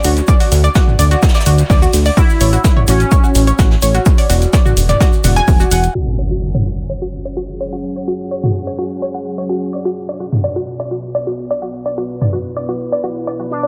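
Dramatic and cinematic, this melodic techno excerpt at 127 BPM in F# minor sets bright, detuned analog pluck arpeggios with chorus, sidechain pumping and dub echo over a fat, tube-saturated analog bass, an up-front layered electronic kick drum, an overdriven punchy analog drum machine re-recorded in a large room, and a brushed jazz drum kit and grainy egg shaker sitting in the background, while a juicy, resonant sweep polysynth melody enters at 2.2 s, an electronic impact lands at 6.0 s as a filter sweep begins on the drums, and from 7.0 s a deep, moody ambient pad with a slow attack, built-in reverb and sidechain pumping holds sustained chords in a light, echo-heavy mix.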